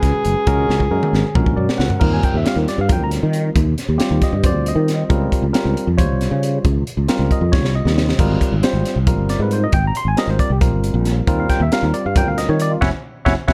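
Soaring and slick, this electric jazz fusion excerpt in 7/8 at 272 BPM in Eb major opens with a breathy alto saxophone playing a brief subtone line with scooped notes through plate reverb and tape echo until 1.6 seconds. Beneath it are a barky tine electric piano comping through plate reverb, a growly, bright fretless bass with ensemble chorus sustaining up front, and a crisp, gritty drum kit with a punchy kick and high-tuned snare. The harmony moves from a C#sus4 into major-ninth chords at 2.0 seconds, with drum fills along the way and a band accent on Gb5 at 12.8 seconds, all in a dark, close production.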